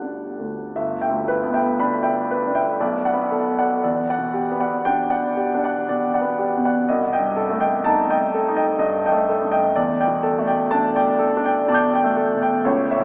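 Impressionist solo classical piano, this luminous, dreamy passage is cut from a longer piece and moves in a flexible, rubato three-beat metre. A single concert grand carries the whole 13 seconds, ranging from G1 up to G6, with a clear, open tone, a deep bass and an up-front placement. The harmony drifts through lush colours, starting on Gmaj7 and G6, then passing through Bm7 and Em9 before a darker Cm6 at 6.9 seconds and a closing Em7. The instrument is tuned slightly below standard pitch, to A4 = 439 Hz. A drenched cathedral reverb with a long 5.8-second decay places the piano in a vast, echoing space, while the overall sound has the narrow character of a small speaker.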